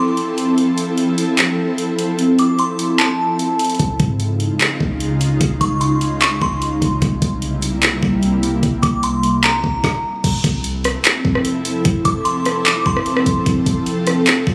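An ethereal pad of detuned, slow-blooming chords with ensemble chorus and built-in reverb opens this atmospheric cloud-rap fragment, sitting up front and gently pumping, while a glassy, warbling FM synth bell traces a high melody through chorus and delay. A smooth, electronic, tape-warm R&B kit arrives almost at once in a half-time feel, with a knocking kick, woody snare, warm hi-hats, rim clicks, handclaps and crash cymbal. The opening is a sparse break, with the kick held back from 2.2 seconds, until a soft, round 808-style bass of deep, dark sine tone enters at 3.8 seconds beneath a harmonic turn. A brief stop at 9.8 seconds gives way to a new section, where the pad, drums and bass carry on and the bell falls silent shortly before the end. The mood is blissful and floating, captured with light reverb and the studio ambience of a phone recording in the room.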